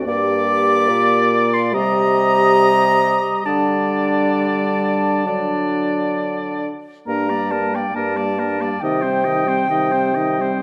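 Yearning and elegiac, this brief excerpt from a slow romantic movement for wind quintet unfolds in G minor at a rubato 62-74 BPM in 4/4, with a pure, straight-toned, tongued flute singing the melody up front. A clear oboe traces a soft-attacked second line with vibrato, while a mellow clarinet sits in the background and a warm French horn with light vibrato fills out the accompaniment over a soft-attacked bassoon bass that stands forward in the mix. The harmony moves from Gm through Cm, Dsus4 and D before returning to Gm and Cm, all carried by a moderate scoring-stage reverb.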